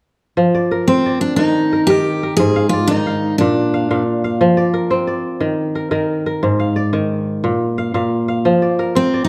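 West African traditional music in a reflective, hypnotic mood, this short passage from a longer piece is built on ringing, crisp kora arpeggios that sit up front throughout. A bright, full-bodied picked steel-string acoustic guitar carries the melody from 0.9 to 4.0 seconds and briefly returns at 9.0 seconds. The dark production places both instruments in a moderate recital hall reverb.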